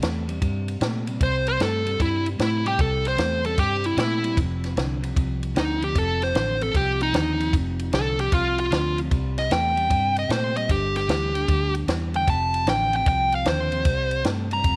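A lightly reverberant studio ambience frames this gritty, laid-back electric blues shuffle, cut from a longer piece and rolling at 152 BPM in 4/4 with a swung eighth-note feel in C mixolydian. A slightly broken-up, compressed rhythm guitar plays a low picked riff throughout, paired with a round, foam-muted vintage electric bass that sounds dark and amped. A compact cocktail drum kit keeps the groove on kick, snare and ride, its dry, natural tone marked by a high-tuned snare, tight kick and shadowy cymbals. From 1.2 seconds a dark, smooth lead guitar with overdrive steps up front for a solo, the loudest part of the mix, ranging from Eb4 up to Bb5. The harmony moves from C7 to F5, returns to C7, then passes through G5 and F7 before settling on C5 near the end.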